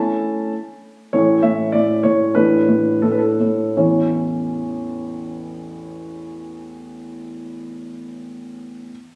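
A classical-period piano sonatina fragment in A major, elegant and playful, where a solo concert grand with deep bass, open tone and long sustain sits up front in 2/4 at 79-100 BPM, its rubato phrasing slowing from 0.5 to 3.8 seconds, all captured on a phone in a recital hall whose moderate reverb is thickened by a club-like ambience and compression.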